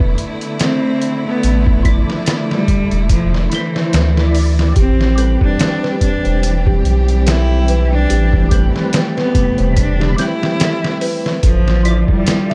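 A dark, small-room trip hop excerpt at 72 BPM in A minor, melancholic and hypnotic, sets gritty, pitched-down sampler drums with a thumpy kick and a deep, round dub sub bass with tube saturation up front beneath lush bowed string chords, while a smooth, distant cello melody with tape echo enters at 0.6 seconds, a mellow, percussive tonewheel organ with chorus vibrato, slow rotary speaker and tremolo joins at 1.8 seconds, and a delicate, tinkling music box plays arpeggios from 4.8 seconds over Dmadd9 and Am9 harmony.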